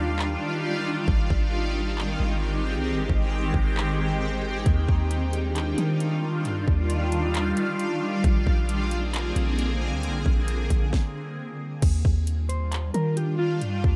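A shimmering, ethereal ambient pad with chorus, phaser and sidechain pumping carries this blissful, dreamy cloud-rap excerpt in Eb major at 134 BPM in a half-time feel, holding chords such as Ebmaj9, Abmaj7 and Bb9 over a deep, boomy 808-style bass and a trap kit with a hard-clipped kick, sharp snare and metallic hats, as the opening break runs to 4.7 seconds, a stop falls at 10.9 seconds, and a dark, clean electric guitar slips in briefly at 12.5 seconds through a rough home-demo mix with digital ambience.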